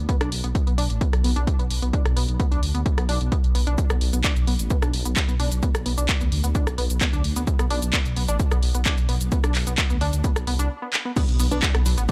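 A deep, rumbling detuned saw bass pumps under a punchy electronic kick, driving this dark, industrial peak-time techno cut from a longer piece, while a tight, nasal sequenced synth riff with chorus and analog delay pulses above it. A punchy, tape-warm analog drum machine adds hi-hat, shaker, handclaps, rim click and crash cymbal, with its hats, percussion and cymbals also pumping. A brief break begins at 10.7 seconds, with a drum fill at 10.9 seconds. At 11.2 seconds a crisp, warbling wavetable chord stab with analog delay sits in the background, and a very quiet electronic impact follows, all within a dry, gritty hardware sound with transformer saturation.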